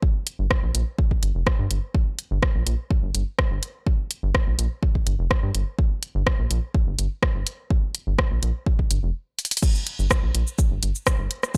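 Minimal techno at 125 BPM in a straight 4/4, this short cut from a longer piece feels sparse and hypnotic. A punchy, layered electronic kick drum opens at 0.0 seconds, joined almost at once by a house drum kit of crash cymbal, hi-hat, rim click and shaker, both tape-warm and up front with the sense of a large room around them. A rubbery square bass moving between F1 and G2 enters at 0.4 seconds, hollow and bouncy with a fast-attack filter pluck, wave-folded saturation and a dark tone, pumping through sidechain compression. The groove halts briefly from 9.1 seconds, a drum fill lands at 9.4, and a drop from 9.6 seconds carries the track to its end. The overall sound is dry and gritty, with little reverb beyond the drums' room.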